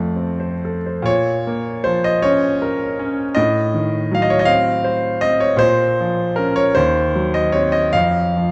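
A clear, smooth concert grand piano plays alone, up front with a deep bass and a vintage character, in this mournful, melancholic romantic nocturne cut from a longer piece. It moves in 6/8 with uneven beats and free rubato, shifting into a new section at 1.1 seconds and passing through shadowy diminished harmonies before its chords drop away at 7.9 seconds, the piano sounding on until 8.5 seconds. A moderate concert hall reverb surrounds the dark production.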